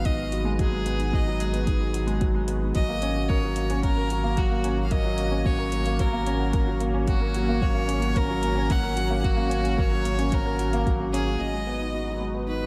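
Hypnotic and intimate, this piano and strings electronica excerpt moves at 111 BPM in 4/4 over G#m7 and F#/G# chords, with a woody upright piano riff up front through low-pass filtering and tape echo, a clear violin melody with light vibrato and an airy bow, a lush detuned unison pad fading in behind with chorus, phaser and sidechain pumping, a round analog bass that pumps too, and a deep kick with metallic hi-hats in a small room, until a filter sweep on the piano marks a new section at 11.4 seconds.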